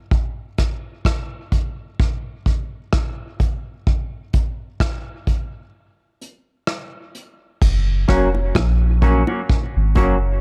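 A dark, warm production sits in a small room, giving this laid-back, spacious dub reggae excerpt a close, intimate feel at 64 BPM in F# major, with a swung sixteenth-note lilt. For the first 7.6 seconds a vintage brush drum kit plays alone as a break, up front and mid-forward, its punchy kick, rim click, hi-hat and dark crash cymbal softened by a rolled-off top. At 7.6 seconds the harmony lands on F# and a soft, round sub bass arrives, deep and sustained with a fast attack. Just after, a clean, twangy electric guitar and a reedy, bright electric piano with tremolo add accompaniment and stabs, both carried on tape echo. Low-tuned bongos, played with hard hands and also treated with tape echo, tap in the background from 8.3 seconds until the cut just past 10 seconds.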